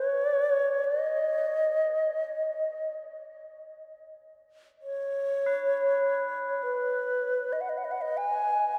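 An airy, bright xiao with vibrato and a soft attack sits close and up front, its delayed melody floating over mellow, metallic tubular bells that ring solemnly beneath it in this peaceful, free-time world meditation fragment, set in a wet cathedral reverb that makes the space feel vast and echoing.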